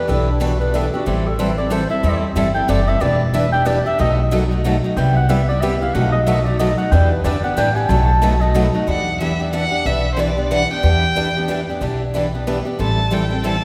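A mellow, vintage-toned clarinet solos with vibrato over a bright picked steel-string guitar, a boxy swing-style guitar and a woody, thumpy upright bass in this virtuosic, swinging E minor jazz manouche excerpt at 184 BPM in 3/4, before a rich, smoothly bowed violin takes the melody at 8.9 seconds, all set in a wet concert-hall reverb.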